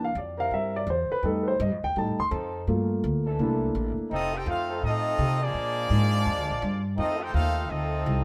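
A brassy, energetic swing jazz excerpt at 167 BPM opens with an intimate grand piano soloing, its action noise audible and its notes ringing with long sustain, over a woody, thumpy pizzicato upright bass. From 0.4 s a distant, roomy muted trombone section holds soft, veiled cup-mute chords. At 4.1 s the music settles into F major as a bright trumpet section takes the melody with light vibrato and a smooth top, while a second, clearer muted trombone section plays a supporting line, all in light reverb.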